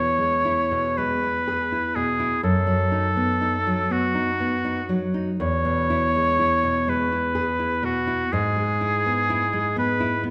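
A clear oboe and a nylon-string guitar begin together in this short excerpt of a tender, romantic classical duo, moving in an unhurried, flexible rubato over a lilting compound metre. The oboe carries the melody in a modest middle range, singing with a light vibrato in a poised classical style, set up front as the solo voice. Beneath it, the fingerpicked guitar supplies the accompaniment with a dark, full-bodied acoustic tone that reaches down into deep bass notes, also placed close and present. The harmony stays simple and gentle, settling from the home chord to its dominant and back again before shifting to a new inversion near the 8.3-second mark. A moderate concert hall reverb gives both instruments a soft halo of space, and the passage ends around 10.3 seconds as the phrase carries on beyond the cut.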